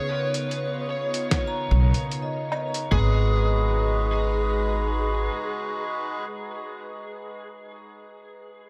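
A woody, thumpy upright bass sits up front in this deep, spacious ambient dub fragment, its gut strings plucked pizzicato from about 1.7 seconds. Above it, an overdriven slide guitar played with fingerpicks carries the melody through a tape echo, while a melodica adds reedy, nasal stabs soaked in dub echo. A calm, detuned organ-like pad with slow attack and long release holds sustained chords in a bright ensemble chorus, moving from C#7 to G#m7 in G# dorian at 75 BPM with a light 16th-note swing. The rhythm comes from a muffled, pitched-down sampler-style kit of hi-hat, fat snare and woodblock, overdriven and sent into dub echo, joined briefly by a layered, deep electronic kick with a tape-warm character. From 1.5 seconds a hard-mallet vibraphone rings out metallic arpeggios with slow motor vibrato and tape echo, lingering alone after the other parts end, all in a light digital ambience.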